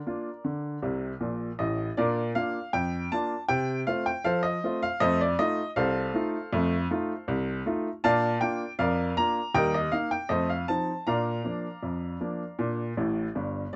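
A clear, woody upright piano opens this cheerful, lively ragtime excerpt on its own, sitting up front with a natural tone at 79 BPM in a straight 2/4 feel in Bb major. Spanning G1 to Bb5, the solo moves through Bb, F7 and Eb harmonies, with short fills at 0.8 and 13.0 seconds. A light reverb surrounds the playing, and the top end is limited, with nothing above 7.9 kHz.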